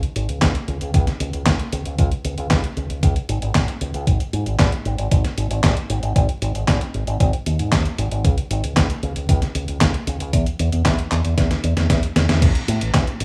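A clean 12-bit drum machine with a fat snare, handclaps, hi-hat and crash opens this romantic, playful italo disco excerpt at 115 BPM in straight 4/4, joined at 0.2 seconds by a bright, punchy fingered electric bass through an envelope filter and tape echo, then a thumpy, tape-warm electronic kick at 0.4 seconds, with a drum fill from 11.4 seconds leading to a band accent at 12.3 seconds, all under light reverb and vinyl crackle.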